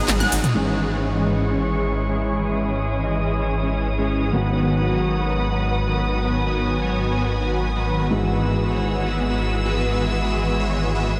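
A straight festival progressive house groove opens with a band accent at 0.1 seconds, as a big-room dance kit of handclaps, metallic hi-hat, ride, shaker and toms plays a brief fill before dropping out at 0.5 seconds. From there the piece settles into an anthemic, euphoric passage built on G#m7, C#m/G#, B/G# and Eadd9/G#, carried by huge, bright detuned supersaw chords up front, colored by phaser and tape echo, with a filter sweep running through them until 11.2 seconds. Beneath them, a thick, saturated detuned saw bass with chorus holds a low G#, while a dark, mellow baby grand piano adds echoing accompaniment in the background. A chamber string section, bowed sul tasto with light vibrato and a soft attack, sustains intimate chords under its own filter sweep. Everything is steeped in a vast ambient reverb with a long tail, giving the mix a dreamy, floating sheen in this short cut from a longer track.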